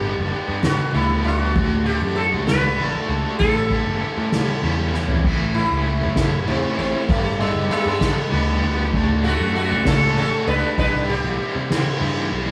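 Hypnotic and kaleidoscopic, this short psychedelic rock excerpt moves in a slow, rolling 6/8 and is cut from a longer piece. A buzzing, shimmering sitar carries the melody over a double-tracked, overdriven guitar riff with tremolo and a round, punchy electric bass. A drum kit played with soft mallets sits up front, with dark cymbals, a fat snare and a boomy kick in a big room sound. Bright, very quiet congas add a light layer of hand percussion until 5.2 seconds, just after a drum fill begins at 4.5 seconds. From 5.2 seconds the sitar takes a solo over shifting major and major-seventh chords, all played live in one room with moderate studio reverb.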